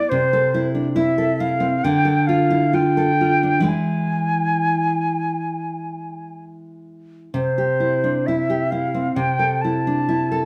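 Romantic duo for flute and classical guitar, elegiac and yearning, in A minor at a rubato 63-70 BPM in 4/4, where the concert flute carries the melody with a pure, soft-attacked tone, expressive vibrato and plate reverb over the nylon-string guitar's warm, full-bodied fingerpicked accompaniment, both up front in a wet studio room as the harmony moves from Am/C through Dm and E to C and settles back on Am/C by 9.1 seconds in this short passage from a longer piece.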